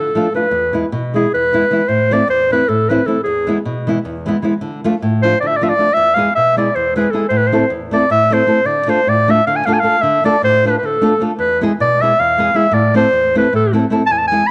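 A warm, classical-style clarinet takes a fiery, virtuosic solo up front in this Balkan folk piece in 7/8 at 310 eighth-note beats per minute in D Dorian sharp four, over a dark, small-sounding fingerpicked nylon-string guitar moving through Dm, E and Am, with both close-miked in a moderate recital-hall reverb across a 14.5-second cut from a longer piece.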